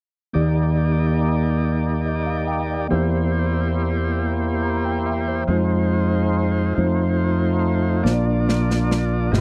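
A dry, close 1970s-style studio sound frames this reverent, soulful slow gospel passage in 6/8, cut from a longer piece, where a mellow tine electric piano and a thick tonewheel organ, lightly overdriven through a slow rotary speaker, carry the chords over a punchy, up-front fingered electric bass. The harmony moves from Ebmaj7 through C7/E, Fm7 and F7 to Bb. A polished, medium-tuned snare drum plays a fill from 8.1 seconds, and a clear, distant horn section with light vibrato slips in with the melody at 9.3 seconds, just as the passage ends.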